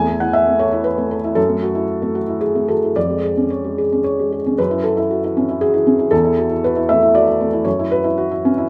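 A felt-muted upright piano, soft and mellow with thick felt and placed up front, plays solo through this brief melancholic, intimate excerpt of neoclassical minimalist piano in F# minor (tuned to A4 = 441 Hz), moving in a rubato 3/4 at around 109-120 BPM across a range from E2 to G#5 over chords such as Esus4, F#m7, C#/E# and F#7(no3), with a second passage beginning at 4.6 seconds and a moderate stone-room reverb surrounding the sound.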